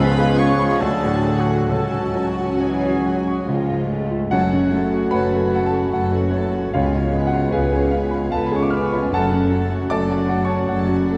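In a rubato 3/4 at 66-77 BPM, this passionate, tragic romantic excerpt in F# minor sets a clear, up-front grand piano melody over sul tasto violins sharing the tune and a second line, while a hollow flute, mellow oboe, clarinet and trumpet stabs, a punchy bassoon and a dark tuba drop away by 4.1 s, leaving smooth violas, background French horn chords, floating cellos and double basses to sustain the harmony into the second section at 4.3 s, all bathed in a wet, distant scoring-stage reverb.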